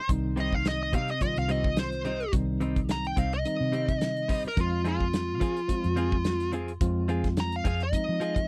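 A dry, close studio sound in a 1970s style frames this smoky, brooding straight-eighth soul blues in C minor at 107 BPM, moving from Cm to Fm at 4.6 seconds with a light sixteenth-note swing. A bright, smoothly overdriven lead guitar solos up front across the whole fragment, over a tine electric piano heard through its built-in speakers and a dark, round, foam-muted fingered bass. A small-room soul drum kit with a tight kick, medium-tuned snare, hi-hat and rolled-off top sits forward, while a clean, compressed, direct-recorded guitar adds lush-chorused stabs from 0.4 seconds.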